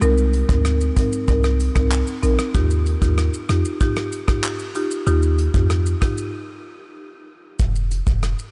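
Bouncy and sunny, this dancehall cut from a longer piece moves at 95 BPM in a straight 4/4, in Eb major with tuning at A4 = 438 Hz, shifting from Cm7 to Ebadd9. Up front, a woody, dark marimba played with medium mallets carries the accompaniment until 6.3 s, where a break begins. A deep, boomy 808-style bass with a fast attack and decaying tail runs under it to 8.3 s, and an acoustic brush kit with a punchy kick, hi-hat, rim click, shaker and handclaps plays to 8.5 s, all set in light reverb and small-room ambience with a softened top end.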